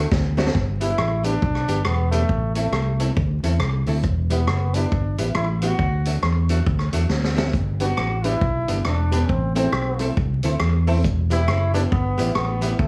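Cheerful, upbeat ska with a swung feel, cut from a longer piece, where a bright, distant trombone carries the melody from 0.8 seconds over a round, dark fingered electric bass sitting up front and a punchy vintage drum kit with a high-tuned snare, hi-hat, kick and rim click. A clean, compressed hollow-body archtop guitar supplies picked accompaniment, while a clear, woody upright piano adds stabs from the background, returning at 7.8 seconds just after a drum fill. Slapback echo touches the guitar, piano, drums and trombone, and light studio reverb and vinyl crackle lend an aged patina.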